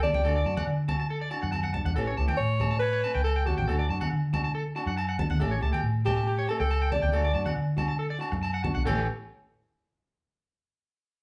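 A breathy, vibrato-laden alto saxophone sings an up-front jazz-style solo with scooped notes over a dark, round, foam-muted electric bass, a slightly broken-up, twangy picked electric guitar playing arpeggios, a fingerpicked steel-string acoustic guitar and soft-handed, low-tuned congas, with distant ringing agogo bells joining at 0.3 seconds, as this carefree, danceable highlife guitar band cut from a longer piece rocks between D and A7 in a live-in-one-room sound with moderate large-studio reverb.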